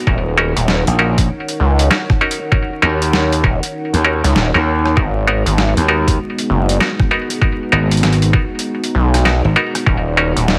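A gritty, vinyl-crackled glitch hop excerpt at 98 BPM in G# minor with a swung 16th feel, funky and playful, where a thumpy overdriven electronic kick and a pitched-down boom bap kit of hi-hat, rim click and snare sit up front beside a saw-toothed, sync-edged synth bass and a bright slap bass entering at 0.9 s, while a nasal muted clav stabs through delay and sidechain pumping, a moody detuned analog pad with 12-bit grit breathes in the background, and a very quiet warbling ambient pad hovers beneath chords moving from D#m7 to G#m7.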